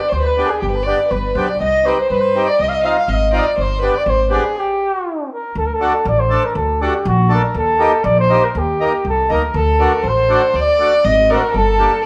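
In a straight 2/4 at 121 BPM, this festive yet bittersweet klezmer piece in G phrygian dominant puts a mellow cornet with light vibrato at the front on the melody, over woody pizzicato upright bass and reedy accordion, with a floating bowed violin on a second line; the band stops at 4.6 s, resumes at 5.6 s in D phrygian dominant, and the violin returns at 9.6 s, heard as a live band in one room with moderate large-studio reverb.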